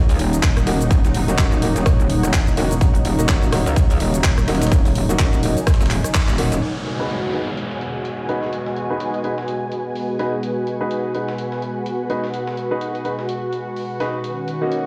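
Bouncy and swaggering, this bass house cut moves at 126 BPM in 4/4 with a swung sixteenth feel, sitting in G# minor on a D#m7 chord before shifting to G#m7 at 6.6 seconds. A punchy, up-front electronic kick and a layered garage kit with warm, low-pass filtered hats, claps, rim clicks, shaker and crash drive the opening half, while a gritty, very quiet sampler-style breakbeat kit with a high-tuned snare runs underneath throughout. A metallic, saturated wobble bass with overdrive and chorus growls up front until 6.6 seconds, pumping against the kick alongside a bright, detuned sawtooth pad whose resonant filter swells give it an evolving character. Higher up, an ethereal, mellow pad warbles in the background with ensemble chorus and its own reverb, and a clear but worn baby grand piano plays stabs coloured by tape echo, a low-pass filter and a filter sweep that begins at 6.6 seconds. A full-band accent lands at 6.1 seconds, and as the kick, garage kit and bass drop away an electronic downlifter falls through the first part of the second section, all heard as if played on a big sound system in a bare stone room.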